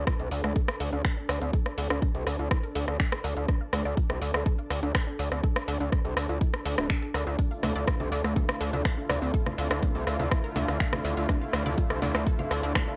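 This hypnotic, dark melodic techno excerpt opens on a D minor add-nine chord, with a gritty, aggressive synth bass up front, a punchy detuned unison pluck spinning arpeggios in the background under a filter sweep and analog delay, and an ethereal, airy pad drifting behind it through ensemble chorus and reverb. An electronic kick and a house kit of congas, finger snaps, hi-hat and rim click drive a straight 4/4 at 123 BPM, both sounding tape-warm and re-recorded in a large room while sitting up front. The sawtooth bass carries oscillator sync, ring modulation and tube saturation, and sidechain pumping makes the bass, pluck and pads breathe with the kick. At 7.4 seconds a thick, nasal unison pad enters with sustained chords, joined by a grainy acoustic tube shaker. The mix is dry and hardware-gritty, with transformer saturation and a cassette tape character, tuned slightly flat to A4 = 436 Hz.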